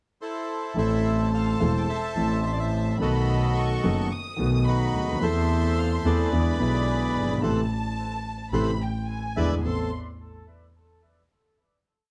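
Tango, sultry and melancholic with a rubato feel: a reedy bandoneon opens at 0.2 s with a motif-based melody in period phrases, and a concert grand piano with deep bass and long sustain joins at 0.7 s, playing tango rhythm in uneven groups of three and two eighths, bathed in plate reverb. At 0.8 s a bowed chamber violin section enters with a soft-attacked, sul tasto counter-melody full of vibrato, while a single up-front bowed double bass, clear and earthy with light vibrato, carries the bass line in that same uneven tango rhythm. The band strikes an accent before the piece settles on a closing Amadd9 chord, in a dark, warm production.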